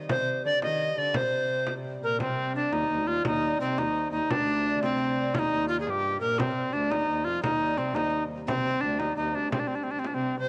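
A very quiet, breathing harmonium drone opens this mysterious, driving medieval dance excerpt in C minor at 115 BPM in 6/8, joined almost at once by an up-front, bright, chiffy tenor recorder melody with vibrato and a cassette-tape tint, a gut-string viola da gamba second line, and a small frame drum, while a mellow, thumb-plucked concert harp enters in the background at 2.0 seconds, all set in a lush hall reverb on a home cassette recording.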